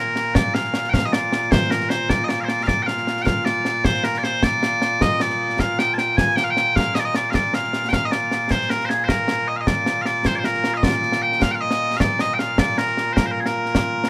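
Set in a straight 6/8 at 103 BPM, this proud, ceremonial excerpt of Scottish pipe music in Bb major puts piercing, continuous bagpipes up front on the melody, joined from 0.2 s by close, dry concert snare and bass drum with dark cymbals, and shifts into a new section at 9.7 s under a light reverb.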